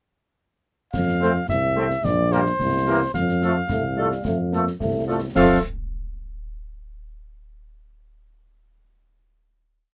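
Light reverb gives this short, complete march for wind band a gentle sense of space, with the tuba and cornet sitting up front and the euphonium and woodwinds set further back in the room. It moves at a spirited, proud 109 BPM in a straight 2/4, in F major with tuning slightly raised to A4 = 445 Hz, and passes from F through Gm/Bb and C7 back to F before closing on a final chord. From 0.9 seconds a punchy cornet solo carries the melody, while a soft-attacked tuba plays bass on the beats and a close acoustic drum part sets a marching snare over a bass drum on the beat, topped by dark cymbals. At 1.2 seconds the ensemble fills in: a mellow woodwind section adds a tight second line of after-beat and sustained chords, a smooth-topped French horn section plays after-beat chords in the background, and a clear, vintage-sounding trombone section gives short accented and sustained chords. A roomy euphonium with light vibrato enters at 3.7 seconds to answer at the phrase ends, in the classical band manner that runs through the whole piece.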